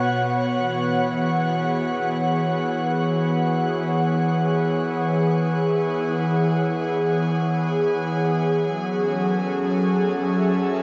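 A lone breathy synth pad opens this serene, reflective ambient excerpt in free time, its soft triangle-and-sawtooth tone blended with a noise layer, slow to bloom and long to fade, thickened by chorus and tape echo and placed up front. Bathed in a shimmering 8.0-second reverb with a muted top end, the pad moves from Bsus2 to E6 at 0.5 seconds and settles on F#m7 at 8.6 seconds, its tuning set slightly flat at A4 = 437 Hz.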